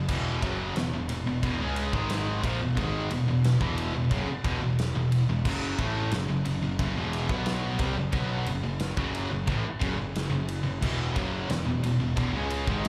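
Hard rock at 89 BPM in a straight 4/4, energetic and swaggering, heard as a live gig through the venue's PA with club reverb: an up-front, high-gain distorted guitar and a bright, overdriven stack guitar with slapback echo sitting further back play the riff over E5 and F#5 chords, a warm, fuzzy picked bass drives the low end, and a huge arena drum kit entering at 0.1 s adds a fat snare, punchy kick, crash and ride in a big, natural room sound.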